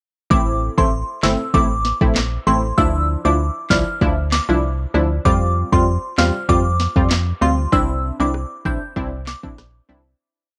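A syncopated dancehall beat at 97 BPM drives this sultry, hypnotic piece, its electronic drum kit sitting up front with a deep kick answered by a sharp snare layered with handclaps, plus rim clicks, the kit warmed by cassette tape. Beneath it a dark, hollow FM bass with an organ-like tone plays syncopated low lines, while punchy detuned sawtooth-and-square chord stabs with a sub octave, filter pluck and chorus push bright syncopated chords through Am, Dmadd9, Fsus2 and Cadd9. A glassy, crystalline FM bell carries the syncopated hook with chorus and tape coloring, and the dry home cassette recording fades out from 7.7 seconds.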